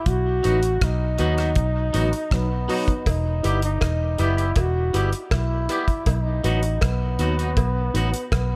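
A dark, lightly reverberant studio sound frames this short roots reggae excerpt, which moves at a laid-back, meditative 80 BPM in 4/4 over a chord sequence of B, Em and back to B. Up front, a bright, distant-sounding solo trombone carries the melody with vibrato and tape echo, joined briefly between 1.9 and 2.9 seconds by a clear, punchy trombone section playing a second line in the background. The foundation comes from a round, foam-muted fingered electric bass, prominent in the mix, and a dry, airy 70s drum kit with a tight kick, hi-hat and rim click, with the band hitting accents through the opening three seconds. A clean, twangy picked electric guitar with a scooped tone and tape echo fills in the accompaniment, while a reedy electric piano with fast tremolo adds mellow stabs from behind. From 3.1 seconds a cowbell, egg shaker and group handclaps add light percussion at the back of the mix.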